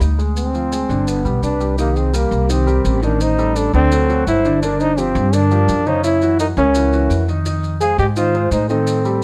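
Driving and sultry, this Afro-Cuban jazz excerpt moves at 169 BPM in a straight 4/4, cut from a longer piece and set in light reverb. An up-front solo trombone carries the melody with a smooth top and light vibrato, while a natural-sounding grand piano supplies the accompaniment beneath it. The upright bass sits equally forward, plucked on gut strings with a woody, thumpy tone, and close, grainy maracas add percussion. At 1.4 seconds a hollow, airy flute enters in the background as a second line, with chiff, a crisp attack and rolled-off highs. The harmony passes through chords such as Dm7b5, Cm7, D7, F#7 and Fm7, with a new section beginning at 1.8 seconds.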